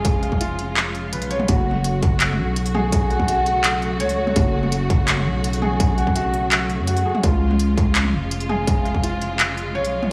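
A distorted electronic kick drives this dark, cinematic half-time drum and bass excerpt at 167 BPM in 4/4, sitting in a small room reverb until it drops out at 9.0 s. Beneath it, a growling, buzzy 808-style bass with a fast attack and decaying notes anchors the low end, while an up-front industrial kit adds smooth hi-hats, handclaps and toms in the same small room. A dark studio string section plays lush, bowed sustained chords sul tasto with vibrato and a woody tone, pulsing under sidechain pumping. Above them, a felt-muted upright piano spins soft, mellow arpeggios through tape echo, its intimate sound carrying audible action noise. The harmony in F# harmonic minor moves from C# to F#m at 1.5 s and back to C# at 7.2 s, all set in light reverb and digital ambience.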